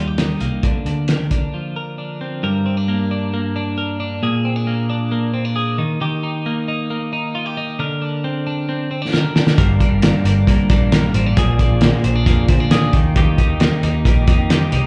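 Youthful and nostalgic, this jangly indie pop excerpt moves at 134 BPM in Bb major, led throughout by an up-front, clean twelve-string electric guitar playing arpeggios with spring reverb and slapback echo, as a dark, foam-muted vintage bass and a muffled, cloth-damped drum kit with a fat snare and tight kick play briefly before a break at 1.5 seconds. The guitar carries on alone through chords moving from Gm to Bb7 and Eb until a drum fill at 9.1 seconds brings the drums back, with the round bass and a slightly broken-up electric guitar through a small old amp, treated with ensemble chorus, joining at 9.6 seconds. It sounds like a live club gig heard through the venue's PA, with gritty, lo-fi drums and a roomy reverb.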